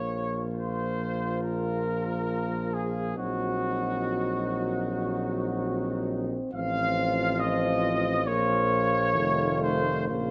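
A moderate scoring-stage reverb surrounds close, detailed microphones in this melancholic, yearning brass band excerpt, a slow, hymn-like classical passage in 4/4 played with a flexible rubato feel. Up front, a tight, mellow trumpet section carries the melody with light vibrato, soft attacks and a smooth top, while a distant, roomy flugelhorn with vibrato sings a second line in the background. A vintage-toned euphonium and a close-miked trombone supply quiet accompaniment behind them, and a warm, soft-edged tuba with vibrato anchors the bass near the front across the full 10.3 seconds.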